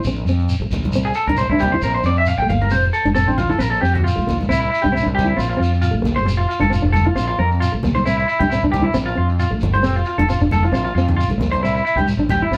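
Carefree and sunny, this highlife guitar band excerpt swings lightly over a dark, full-bodied, thumb-plucked nylon-string guitar, a round, punchy fretless electric bass and a grainy, distant shekere, with ringing, soft-handed congas joining in the background at 0.7 seconds and a bright, twangy, slightly broken-up electric guitar through a small old amp coming in up front with picked arpeggios at 1.1 seconds, while a clean electric guitar solo carries the opening 4.5 seconds, all captured live in a moderate stone room.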